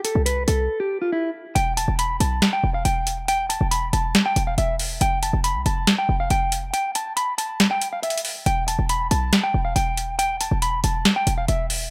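A booming analog drum machine sits up front with a crisp snare and metallic hi-hats, pausing for a brief break at 0.7 seconds and dropping its kick between 6.7 and 8.5 seconds in this menacing, melancholic half-time trap cut from a longer piece. A short, punchy 808-style bass with a sine body and a noise layer hits with a fast attack and decays, while a dark, clean fingered electric guitar carries the melody through spring reverb and tape echo. The dry, gritty hardware sound moves from C5 to E minor, then to F5 and back to E minor.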